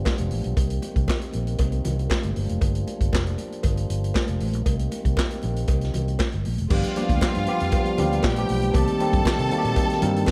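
An up-front vintage drum kit with a punchy kick, handclaps, hi-hat, snare and crash cymbal drives this sultry disco fragment, with a round fingered electric bass, faint high-tuned congas, a metallic cowbell and distant, roomy French horn chords all sounding from the start, before a lush bowed string section and a worn, slightly out-of-tune tine electric piano enter at 6.7 seconds.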